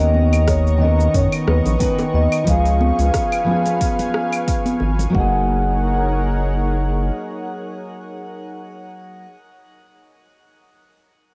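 Heard through the soft haze of a home cassette recording in a springy room, this sunset chillout fragment drifts by at 90 BPM in F# major with a lightly swung sixteenth-note feel and a smooth, relaxed mood. A mellow vibraphone struck with soft mallets carries the melody, its metallic ring carrying a slow motor vibrato and trailed by tape echo and shimmer reverb. Beneath it, a full-bodied, thumb-plucked nylon-string guitar with fresh strings plays the accompaniment, while a lush, detuned sawtooth unison pad with chorus holds slow-blooming chords over Bmaj9/D# moving to C#7, then settling on F#69. A round, up-front analog bass mixing square and sine tones anchors the low end until 7.1 seconds. The rhythm comes from an overdriven, cassette-tinged deep house kit of claves, metallic hi-hat, rim click and shaker, a deep electronic kick, and bright, compressed congas and bongos set in the background, all dropping away by 5.3 seconds so the closing chord rests on the bass, pad, guitar and vibraphone.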